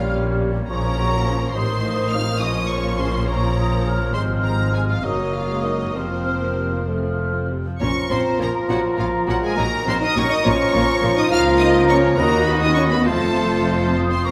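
A lush violin section with focused vibrato carries the melody high above this urgent, stormy excerpt of a quick classical-period orchestral movement in Bb minor, its 6/8 pulse of 63-71 BPM (dotted quarters) stretched with rubato, while an airy flute ensemble, a mellow clarinet and a second violin line weave supporting parts, a clear, distant oboe joins at 7.8 s, smooth background violas and a bassoon fill out the accompaniment alongside sustained French horn chords, and expressive cellos sliding with portamento join a soft-attacked double bass section to anchor the bass, the whole orchestra set in a reverberant recital-hall ambience.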